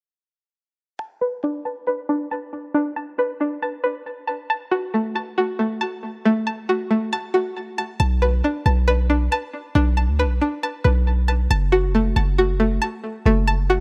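Light reverb and digital ambience give this dark, melancholic trap cut an echo-heavy sheen, and it is lifted from a longer piece. It moves at 137 BPM in 4/4 with a half-time feel, in B minor with tuning set to A4 = 441 Hz. A twangy, string-like resonator pluck carries arpeggios from 1.0 seconds, sitting up front with a bright, full-bodied edge, colored by chorus, a low-pass filter and analog delay, and a filter sweep runs across it through the opening stretch. At 8.0 seconds a deep, boomy 808-style bass arrives with a mellow sine tone and a fast, decaying attack, adding warm low-end weight beneath the pluck. The harmony rocks between Bm7 and F#m in both halves, so the second half keeps the same brooding cycle while the bass thickens the bottom.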